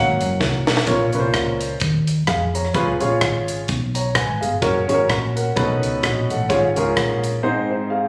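A clear, woody upright piano sits up front in this short, jubilant slice of uptempo gospel, carrying the accompaniment from the first moment to the end at 8.1 seconds. It moves at 128 BPM in 4/4 with a swung eighth-note feel in Db major, opening on an Ab7sus4 before settling into a soulful progression through Bbm, Db7, Gb and Cb9 and resolving toward Ab. A tight funk drum kit enters at 0.2 seconds, its dry, high-tuned snare and tight kick placed close, with hi-hat and rim click filling out the groove and a short fill leading into the main section at 0.9 seconds. Beneath them, a hollow-body short-scale electric bass played with the fingers gives a dark, round, amped low end and drops out at 7.4 seconds. Light reverb and compression frame the performance, which has the casual presence of a phone recording made in the room, and the clip is cut from a longer piece.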